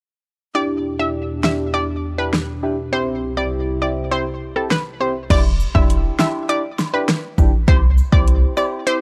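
A straight 4/4 dancehall groove at 101 BPM in E minor, bouncy and sultry, cut from a longer piece, pairs a warbling, detuned analog pluck melody with chorus and tape echo and deep mellow chord stabs over Em7 and C. A hollow, flute-like pad with sidechain pumping sustains until 5.3 seconds, and a punchy, overdriven deep house kit with a fat snare and metallic hats sits up front from 1.4 seconds. At 5.3 seconds a clean, boomy 808-style sine bass arrives with a distant woodblock and cabasa in the background, all in a dry, gritty hardware sound.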